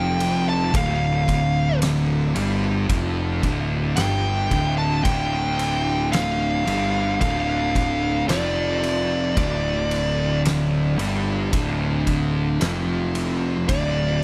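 A dry, close-sounding mix with little reverb frames this brooding, sludgy stoner and doom metal fragment, crawling at 56 BPM in D minor over a single sustained Dm. Up front, a fuzz lead guitar carries the melody through tape echo while a growly, bright, overdriven fuzz bass digs in beside it, and two thick fuzz guitars, one dark and one mellower, grind out the riff in the background. An oversized, low-tuned drum kit enters at 0.2 s with a punchy kick, fat snare and ride cymbal, its saturated, gritty hits ringing in a pumping stone room.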